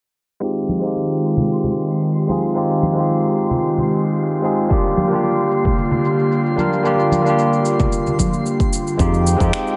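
A lightly swung 4/4 groove of gritty electronic cabasa and finger snaps with soft-handed congas carries this relaxed sunset chillout passage, and a deep, overdriven electronic kick joins at 4.7 seconds. A barky tine electric piano, heard through a combo amp with tape echo and a filter sweep, plays alongside a breathy, chorused pad over Fm9 and Gm7, while a twinkling granular shimmer sits in the background. A bright fingered electric bass appears only briefly at 9.0 seconds, and the echo-heavy mix is bathed in spring reverb with a rolled-off top end.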